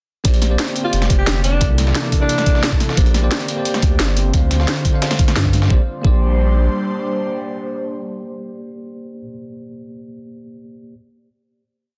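Rolling two-step drum and bass beats at a straight 4/4, built from an up-front overdriven knocking kick, a cracking snare and bright hats, and a gritty looped sampler-style breakbeat in the background, drive this uplifting, dreamy liquid piece alongside long gliding notes from a deep, saturated sub bass, while a bell-like tine electric piano with tape echo plays held chords with syncopated pushes, an airy, breathy pad with chorus, phaser and sidechain pumping sustains beneath, and a distant, raspy alto saxophone adds short answering phrases from 0.8 to 2.7 seconds before the drop gives way at 5.7 seconds to a final chord under a dense, heavily limited modern master.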